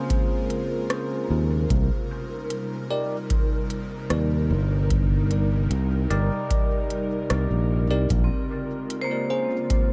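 An airy, breathy pad opens this meditative ambient dub passage, its detuned, chorused chords sitting soft and mellow beneath hard-mallet vibraphone arpeggios and bell-like stabs from a clean tine electric piano treated with phaser and dub echo. The vibraphone has a metallic, ringing, vintage tone, and its echoing arpeggios appear only at the opening and again from 8.2 seconds. A deep analog kick, heard up front with the sound of a large room, anchors the straight 4/4 groove, while a tape-warm electronic kit adds crisp hi-hats and rim clicks. A fingered electric bass enters at 1.3 seconds and holds a warm, up-front presence until 8.3 seconds. The harmony moves from Bbm7 to a long stretch of Cm7 before returning to Bbm7, and digital ambience gives the whole spacious mix a sense of depth in this excerpt cut from a longer piece.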